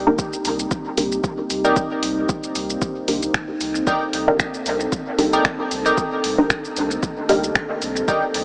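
A swung sixteenth-note groove at 114 BPM in 4/4 drives this deep, hazy dub techno fragment in C dorian, cut from a longer piece and resting on a single Cm7 chord. An overdriven electronic kick, layered and re-recorded in a small room, sits up front beside a punchy, tape-warm analog drum machine playing finger snaps, hi-hat and shaker through dub echo, both entering at 0.2 seconds. Underneath, a clean, smooth sine sub bass holds a low C with tube saturation and sidechain pumping, while a moody, warbling vintage pad sustains dark chords with slow attack, chorus and its own reverb. A muted, detuned dub chord stab, filtered and plucky with a phaser and echo, begins at 0.1 seconds, and a crisp, digital wavetable stab joins at 1.6 seconds with detuned unison and decaying echoes of its own. The whole mix sits in a huge ambient reverb with a seven-second tail, yet carries a small-speaker sound that keeps the haze close.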